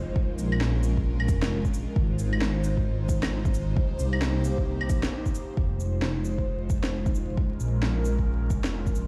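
A swung 133 BPM groove in 4/4 drives this melancholic, ghostly future garage excerpt in F minor, where a deep, tape-warm kick up front and an overdriven percussion kit of cabasa, shaker, claves and woody snare join a dark, rumbling detuned saw bass and an airy, breathy pad with chorus, both pumping to the sidechain, as Bbm7, Fm7/Ab and Cm7 give way at 5.6 seconds to Fm7 and Bbm7, all cloaked in stone room reverb and vinyl crackle as though played on a big sound system in a bare room.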